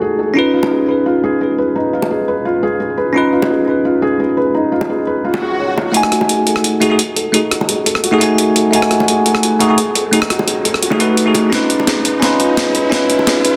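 Liquid drum and bass at 172 BPM, soulful and rolling and cut from a longer piece, opens with a bright, bell-like tine electric piano treated with phaser and digital delay over muted, dark felt upright piano arpeggios and round, low-tuned bongos; at 5.9 s a gritty, sampler-style breakbeat kit of hi-hat, rim click and soft-clipped snare arrives with a barely audible deep sine sub bass, while an electronic swell and riser in the background and a filter sweep on the felt piano build toward a drum fill at 11.5 s, set in a lush hall reverb with a dense, heavily limited master.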